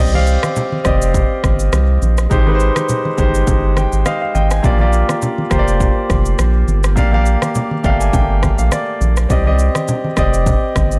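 A concert grand piano sits up front in this hypnotic, sultry afrobeats excerpt, its intimate, polished tone carrying audible action noise and long sustain as it voices chords across a range from Ab3 to Ab5, stepping out with fills at 3.5 and 7.6 seconds. Underneath, a thick, saturated sub bass with a fast attack and sustained notes holds the low end between F1 and C2, sitting prominently in the mix. An electronic, produced afro-pop drum kit enters at 0.3 seconds with a deep, tape-toned kick, rim click and shaker, moving at 103 BPM in 4/4 with a gentle swing on the sixteenths. Low-tuned, damped congas played with soft hands add a vintage, band-limited texture from the background. The harmony in C minor cycles through Cmadd9, Abmaj7, Bb6 and Gm7 before returning to Cmadd9, and the dry sound, with little reverb, keeps the groove close and focused.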